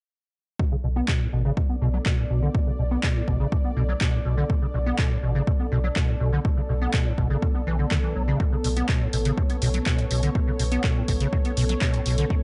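This is a dry, gritty hardware recording with a dark, rolled-off top end, an acid house excerpt at 123 BPM in 4/4 with a straight, driving feel in B minor that sits on a single Bm7 chord. An overdriven electronic kick leads off at 0.6 seconds alongside a deep acid bass riff, both placed up front; the kick is punchy and was re-recorded in a large room. The acid bass is rubbery and square-wave based, with a resonant filter sweep, notes that have a fast attack and then decay, tube saturation, ensemble chorus and sidechain pumping. Beneath it, a round sine sub bass holds mellow sustained low notes, also pumping with the sidechain. A punchy analog drum machine adds overdriven handclaps and hi-hat from 1.1 seconds, set in the same large room. Over the top, a moody, detuned sawtooth pad with a sub octave fades in slowly to sustain full-bodied, evolving chords, treated with chorus and sidechain pumping, giving the short cut a gritty, brooding drive.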